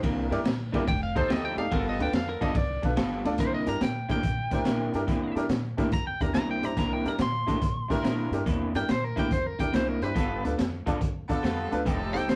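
A swung 142 BPM electric blues shuffle in C mixolydian with a laid-back, gritty mood, this rough rehearsal-room excerpt pairs a crunchy breakbeat drum kit with punchy kick, high-tuned snare and dark cymbals, woody pizzicato upright bass, a lo-fi electric guitar riff through a small old amp with vibrato effect, distant jazz-style horn stabs, and a slightly detuned upright piano entering at 0.3 s, while a twangy, bright lead guitar solo up front carries the melody from 0.9 s over C9, F9 and G9 chords.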